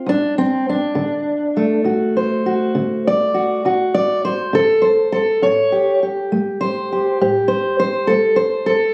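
Laid-back yet rollicking, this short cut from a longer acoustic country blues piece rolls along in a straight 12/8 feel. A lone fingerpicked steel-string acoustic guitar carries everything from 0.0 to 8.9 seconds, ranging from D2 up to D5. Its tone is dark and auditorium-sized, sitting up front, with finger squeak audible on the strings. The harmony rests on D7 before moving to A7 at 5.4 seconds. The sound has the feel of a phone recording made in the room, with moderate ambience and a club-like reverb around the guitar.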